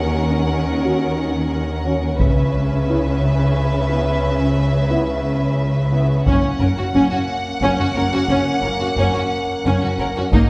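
A slow 6/8 pulse at 59 dotted-quarter beats per minute carries this dark, dramatic stretch of epic orchestral film score, a build-up cut from a longer piece. The violins carry a lush, vibrato-rich melody while a second violin line with a soft, expressive attack sits beneath it. Woody violas murmur in the background, and a distant cello section joins focused double basses to anchor the low end with bowed, vibrato-laden tones. A mellow French horn section enters at 0.8 seconds with roomy sustained chords set back in the mix. At 2.2 seconds a close, dry taiko ensemble struck with hard sticks arrives as the loudest part, driving the build. The harmony moves from D#m7 to C#m7 and settles on F# at 6.3 seconds, all bathed in the reverb of a recital hall or church.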